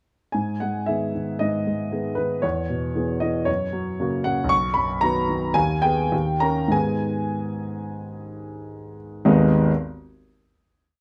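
Stormy and brooding, this brief romantic character piece for solo grand piano unfolds with rubato, a smooth, vintage-toned single-line melody sitting up front over bass with rocking two-note chords, slowing from 3.5 seconds through a dark cadence onto a final chord that rings in light reverb until 11.0 seconds.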